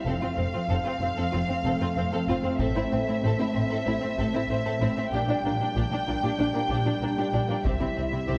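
A heroic, dramatic cinematic orchestral cue at 95 BPM in G dorian opens with a distant, lush violin section carrying the melody over mellow background French horn chords, joined almost at once by a close, expressive second violin line, a smooth viola accompaniment, a focused double bass and a portamento-inflected cello section in a dark concert-hall space, while a dry taiko ensemble struck with hard sticks enters at 2.6 s and again at 7.6 s over chords moving from F through Am and Gm/Bb to C in this brief cut from a longer piece.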